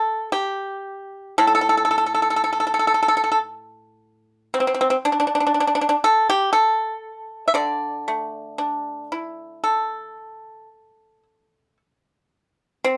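Rubato phrasing floats around 53-59 BPM in 4/4, giving this elegant, flowing piece of Chinese traditional music an unhurried, breathing pulse in D shang mode. A solo pipa, played with fingerpicks, carries everything from 0.0 to 13.0 seconds across a range from A2 to E5, its dry, percussive attack sitting up front with a warm body. A moderate studio ambience surrounds the live performance, and the passage is cut from a longer piece.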